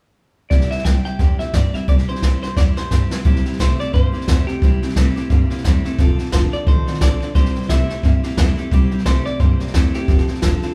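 Rockabilly excerpt with a retro, upbeat swing feel, played by a band live in one room with light reverb. A bright, twangy electric guitar through a small old amp carries the melody with tape echo and a slightly broken-up, lo-fi edge, over a scooped, clean electric guitar riff, a picked steel-string acoustic guitar with audible finger squeak, and a woody, thumpy pizzicato upright bass on gut strings that sits very quiet in the mix. Up front, a brushed jazz drum kit with a boomy kick and a medium-tuned snare plays a fill at 2.6 seconds leading into the second section, while the harmony moves between C and F.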